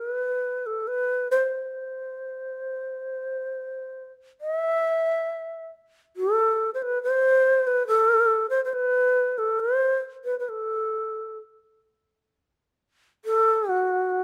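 Closely miked and lightly reverberant, this short excerpt of austere, meditative Japanese chamber music unfolds in free rubato around a solo long shakuhachi, up front throughout, whose airy bamboo tone speaks with a soft attack, held straight yet expressive.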